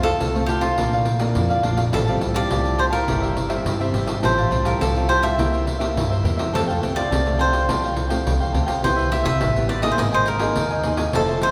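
A growly, woody upright bass sits up front in this playful, festive samba and choro excerpt, plucked pizzicato in F major at 104 BPM in a straight 4/4. Above it, a crisp, picked cavaquinho carries the melody, while a second cavaquinho with a mellow tone supplies accompaniment. A small-sounding, fingerpicked nylon-string guitar fills out the harmony, and a jingly pandeiro played with hard hands adds a vintage, band-limited shimmer. All five parts play together throughout the 11.5 seconds, moving through F, Bb, C7 and Fadd9 before the harmony shifts at 8.8 s to Cmaj7 and then Absus2. A long, wet church reverb gives the ensemble the spacious ring of a large hall.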